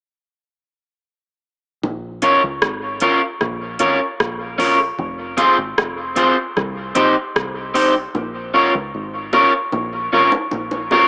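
A heavy, spacious dub reggae excerpt in Bb dorian at 76 BPM opens at 1.8 seconds with a dark, foam-muted fingered bass, a booming overdriven analog drum machine with a deep kick, metallic hats and rim clicks soaked in dub echo, and a brief touch of low-tuned, saturated bongos. At 2.2 seconds an up-front electric guitar at the edge of break-up joins, picked and thickened by lush chorus and dub echo, over a Bbm, Fm and Cm progression. The drum machine drops out at 7.9 seconds and the hard-hand bongos return at 8.1 seconds with their own echo, all heard through a small-speaker sound and moderate spring reverb.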